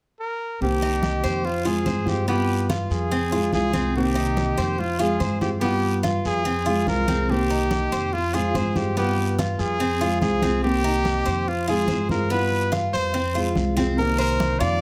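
A clear trumpet with light vibrato leads up front from 0.2 s, singing a sultry pop-style solo melody bathed in plate reverb over a danceable Cuban son and guajira groove at 144 BPM in C minor, cycling through Cm7, Fm and G7. From 0.6 s a small, dark fingerpicked nylon-string guitar, a woody, thumpy pizzicato upright bass, soft-handed congas set in the background and a raspy, close guiro join in, with the picked, metallic double strings of a Cuban tres adding arpeggios from 0.8 s. The passage is cut from a longer piece and sits in a light overall reverb.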